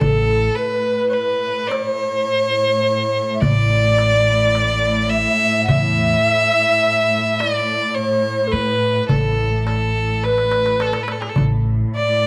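Arabic maqam ensemble music in A maqam rast, this stately, warm excerpt moves at 106 BPM in a straight 10/8, cut from a longer piece. A clear, focused solo violin carries the melody up front with bowed vibrato, while an airy alto flute with a soft attack and expressive vibrato adds a close-miked second line. Beneath them a lush, smooth-topped cello section holds a bowed drone on A2, and a woody, growly upright bass played pizzicato on steel strings anchors the low end until 11.8 seconds. A crisp, small metal-shell darbuka sits in the background, with a drum fill between 10.2 and 11.4 seconds. The whole is set in a moderate echo chamber reverb blended with a small room, tuned to A4 = 439 Hz.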